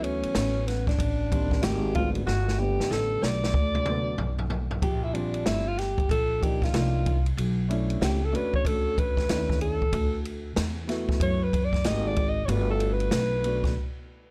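A swung 94 BPM 4/4 groove from an open jazz drum kit with a boomy kick and dark cymbals drives this smooth, cool jazz-hop excerpt, with a pizzicato upright bass adding a woody low end and a drum fill arriving at 2.3 seconds. A dark upright piano with audible action noise and a boxy, long-sustaining tone comps beneath a breathy alto saxophone, which plays melody with vibrato and scooped notes and takes a solo from 4.8 seconds until a brief break at 13.8 seconds. The recording sounds dry and gritty with transformer saturation and a small-room ambience, moving through jazz chords such as D69, G#maj9 and Cm11.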